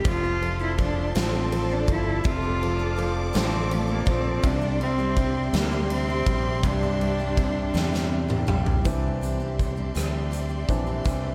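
A slow, swaying 6/8 at 55 BPM carries this heartfelt pop ballad, cut from a longer piece, as a bowed, vibrato-rich solo cello sings the up-front melody with a touch of digital delay. It is supported by brilliant, polished grand piano with slapback echo, an expressive studio string section gliding with portamento through sustained chords, very quiet picked arpeggios on a jumbo steel-string acoustic with audible finger squeak, and a dark, round fretless bass. A huge, natural arena drum kit with a punchy kick rolls into a fill at 7.7 seconds, the cello falls silent at 8.5, and from 8.9 seconds the piano takes a solo, all bathed in a lush hall reverb over F6 and Cadd9 harmony.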